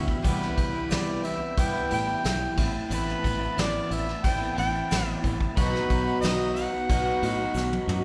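A spacious church reverb hangs over this short, reflective folk rock and heartland rock passage in a straight 4/4, cut from a longer piece. A shimmering, octave-doubled twelve-string acoustic guitar is picked with audible finger squeak, set beside an electric guitar riff through a small old amp that sounds slightly broken-up and compressed. A round, foam-muted fingered electric bass holds the low end. At 0.1 seconds a soft brush drum kit enters up front with a fat snare and tight kick, together with a grainy tube shaker far in the background. From 0.3 seconds a mellow harmonica carries a wistful, vintage-toned melody with scooped notes over chords moving from Cmaj7 to Amadd9 to B, while a very quiet tonewheel organ with slow rotary speaker holds sustained chords beneath, and a drum fill at 7.6 seconds closes the passage.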